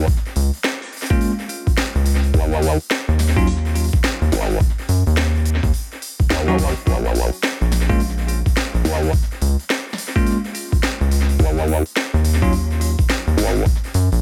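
A saturated, chorused formant-sweep wobble bass opens this gritty, playful glitch hop excerpt at 106 BPM in Bb minor, joined by a rubbery square bass, a thumpy pitched-down electronic kick, a drum and bass kit with cracking snare and crisp hats under tape echo, and bell-like tine electric piano stabs with sidechain pumping from 1.1 to 12.5 seconds, all set in an echo-heavy mix with digital ambience as Bbm arrives at 6.9 seconds.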